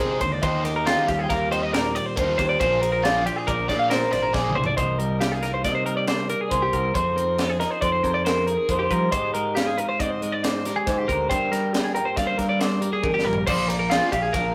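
Math rock and midwest emo in a wistful, intricate 5/4 at 138 BPM in C minor: a slightly broken-up guitar through a small old amp carries the melody over two bright, twangy twelve-string guitars (one picking up-front accompaniment, one playing arpeggios), a warm overdriven picked bass and a crisp, airy fusion kit with a high-tuned snare and punchy kick, while a biting, double-tracked overdriven riff guitar sits in the background until 4.6 seconds and returns at 13.5 seconds, all in a rough rehearsal-room sound with warm saturation, drum fills at 4.3 and 13.0 seconds, and chords moving from Eb69 and Bb9 through Cm7, Fm7, Abmaj7 and Gm7.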